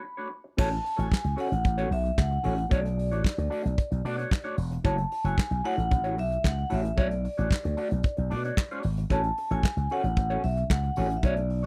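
A straight 4/4 disco groove at 113 BPM drives this short, glamorous and danceable cut, taken from a longer piece. For the first 0.6 seconds, only a ringing vibraphone and a mellow electric guitar sound, and then a soft brush drum kit and a slap bass join in. The drums, played with brushes, sit up front with a tight kick, a medium-tuned snare, hi-hat, crash cymbal and handclaps. The slap bass runs through an envelope filter for a growly, punchy, amped tone. Above it, the clean, fingered guitar adds wah-coloured accompaniment, while the vibraphone carries the smooth melody with medium mallets and a slow motor vibrato. The harmony moves through Bm9, A6 and F#m7, and the whole piece has the dry, close feel of a 1970s small-room studio recording.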